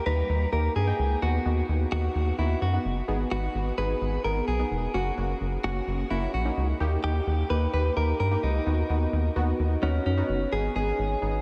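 This synth-pop piece in G# minor moves at 129 BPM in a straight 4/4, with a melancholic, nocturnal mood. A clean electric guitar recorded direct carries the melody from the very start, sitting up front with a compressed edge and colored by spring reverb and tape echo. Round, detuned sawtooth keys with chorus and a mellow filter sweep fill in the accompaniment just behind it. A rubbery, hollow square-wave bass with a dark, resonant filter pluck anchors the low end and is the most prominent part in the balance. The harmony travels from D#7 through B/D#, G#m7, F#, D# and Badd9/D# before settling on G#m at 10.5 seconds. The whole track is dreamy and soaked in a huge ambient reverb with a 7.5-second tail, and it is cut from a longer piece, ending at 11.4 seconds.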